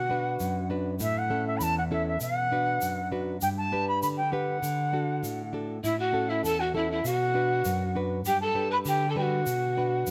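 A reedy quena carries the melody up front in this festive, earthy Andean folk piece, its airy wooden tone colored by a gentle vibrato and soft attack. A breathy bamboo pan flute plays a lower second line with a tongued chiff, dropping out at 0.7 seconds and returning at 5.8 seconds. Beneath them, a nylon-string guitar is fingerpicked in a classical style and sits up front, while a grainy egg shaker adds bright percussion. The tune moves at a straight 99 BPM in 2/4 in B minor, cycling through chords such as Bm, A, G and D. Light reverb and close, detailed microphones give the sound clarity in this cut from a longer piece.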